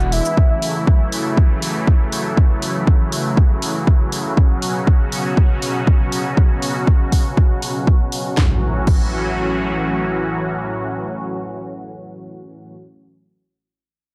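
Uplifting and hopeful, this short progressive house cut opens on a brief, round octave-layered synth lead with chorus and tape echo over an evolving, detuned supersaw swell that holds sustained chords through F#m7, Bsus2 and A6, pumping against the beat. A punchy, overdriven electronic kick sits up front from 0.4 s alongside a house kit of cracking snare, bright hats, cabasa and crash cymbal, both dropping out at 9.0 s. An electronic impact arrives at 8.4 s and rings with the swell to the close, all set in a dark, digital ambience.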